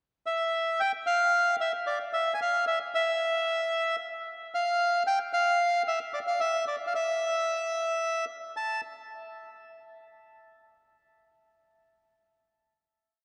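Drenched in a cathedral reverb that lingers for 5.1 seconds in a vast, echoing space, this short, passionate and sultry tango at 112 BPM in 4/4 with a rubato feel features a solo bandoneon, reedy, dark and up front, spinning a motif-based melody of song-like phrases from 0.3 to 8.8 seconds before a final note rings out into the hall until 10.7 seconds.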